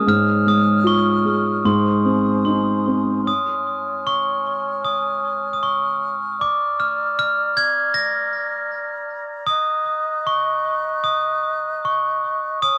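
A gentle, innocent children's lullaby opens with a glockenspiel struck with soft plastic mallets, its bell-like ringing melody sitting up front with a dark, smooth edge and a touch of tape echo. Beneath it, a felt-muted upright piano plays an intimate accompaniment, its thick felt giving a soft, mellow tone with audible action noise, before it drops out at 3.3 seconds. A small flute group holds sustained chords further back in the mix throughout, airy and mellow with vibrato and a crisp attack. The pulse is in four but loose and rubato, drifting tenderly as the harmony moves from Db over Ab to Ab, back to Db, then on through Bb and Ebm. The sound is dry and close, in the manner of a 1970s studio, with only light reverb, and this excerpt is cut from a longer piece, ending at 12.8 seconds.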